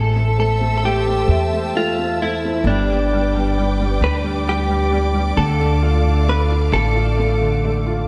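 From the first moment, a picked, clean electric guitar carries the melody through lush chorus and analog delay over a clear, boxy upright piano with audible action noise, soft-attack bowed strings holding sustained chords with vibrato, and a thumpy pizzicato upright bass sitting up front. This dramatic, aching pop fragment in 6/8 moves from Am to G to Dm, the strings singing high and expressive above the woody bass. The dreamy mix is soaked in a lush hall reverb.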